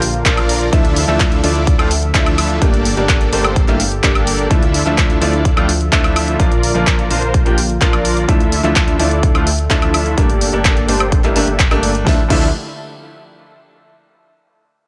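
A dense, airy supersaw riff with pumping sidechain and dub echo opens this powerful, euphoric festival progressive house cut alongside a very quiet, warbling unison pad, a chorused, mellow detuned saw bass and a big-room dance kit with a huge snare, crash, handclaps, hi-hat and woodblock, while filter sweeps run through the supersaw and bass, a brilliant baby grand piano with audible action noise joins at 0.2 seconds, and a punchy, up-front electronic kick lands at 0.3 seconds.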